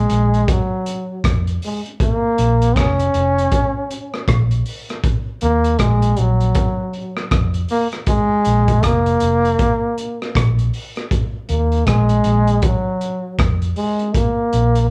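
This roots reggae excerpt has a meditative, serious mood and a swung, unhurried four-beat groove. A solo trombone carries the melody up front in a close-miked, pop-style voice, warm and punchy, with vibrato and scooped notes. Beneath it, a vintage fingered electric bass sounds round and foam-muted, its amped tone sitting low and dark. The acoustic breakbeat kit, arriving at 0.1 s, plays hi-hat, rim click and a punchy kick with a gritty, saturated crunch and a rolled-off top, as if heard in a small room. The band plays live together with moderate studio reverb and a cassette-tape character, and the harmony moves through minor chords and a bare power chord before the chords drop away at 14.1 s.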